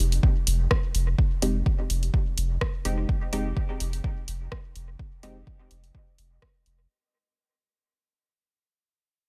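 Hypnotic and meditative, this short cut from a longer dub techno track moves at 126 BPM in 4/4 with a light swing on the sixteenths, sitting on a single F minor seventh chord and tuned slightly flat, with A4 at 435 Hz. A deep, round sub bass with a soft triangle-and-square tone sits up front and pumps against the sidechain. An overdriven, punchy electronic kick shares the foreground, while an analog drum machine adds dry, gritty hi-hat and rim clicks touched with reverb and a dub echo. From 1.4 to 5.4 seconds, a muted, detuned sawtooth chord stab plucks mellow, short-decaying hits, colored by chorus, phaser, sidechain pumping and echo, with a filter sweep running across it. A digital ambience surrounds the mix, and the whole passage fades out over its 6.9 seconds.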